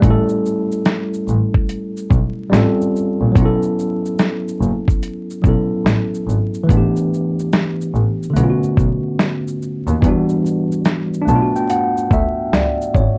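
Reflective and nostalgic, this lo-fi hip hop excerpt at 72 BPM with a swung 4/4 feel sets a worn, slightly out-of-tune tine electric piano up front with cassette tape character and plate reverb over a smooth, distant bowed double bass with vibrato and a gritty, compressed sampler-style drum kit of thumpy kick, medium-tuned snare, hi-hat and shaker pushed by overdrive, all colored by warbling old tape, vinyl crackle and light reverb as the harmony moves from A7 through B9sus4 to Bm9 and Em9 after 6.7 seconds.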